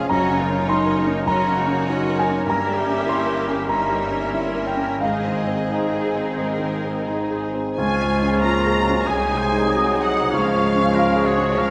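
Lyrical and passionate, this classical passage in Db major moves with a rubato feel at roughly 85-103 BPM, its intimate, up-front grand piano carrying the melody with audible action noise and long sustain over bowed strings: a focused violin section on a second line, smooth violas and cellos in the background, and a distant, soft-attacked double bass section. At 7.7 s a lush, expressive violin section takes up the melody, and at 7.8 s the woodwinds join as the chords settle onto Db, with airy, hollow flute, light-vibrato oboe and a background clarinet on second lines, bassoon accompaniment, and a very quiet, dark horn section holding tight sustained chords. A scoring-stage reverb of 1.8 s bathes the ensemble, and lossy compression artefacts are audible in this excerpt cut from a longer piece.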